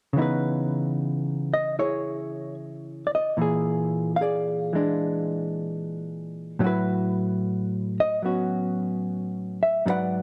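Jazz ballad in C# minor at a slow 74 BPM with a gentle swing, this melancholic, wistful fragment features a clean, compressed, fingered electric hollow-body jazz guitar played up front from 0.1 to 10.2 seconds, moving through C#m9, A#7#11 and A69 chords within a dark production touched by light reverb.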